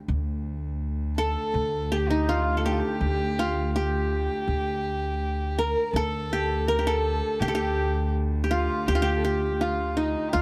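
The qanun leads this short Arabic passage in maqam kurd, its plectrum-plucked triple strings sounding bright-edged and up front, touched with plate reverb as it carries the melody between Eb4 and Bb4. Beneath it, a single bowed cello holds a pure, floating drone on D2, played sul tasto with a smooth top. An upright bass enters at 0.1 seconds, its steel-string pizzicato thumpy and woody, sitting forward on the same low D. At 1.2 seconds a lone dark violin joins with a second line in the qanun's register, bowed sul tasto with vibrato. The feel is straight at 82 BPM in 4/4, the mood longing and soulful, and the whole fragment sits in light reverb as a piece cut from something longer.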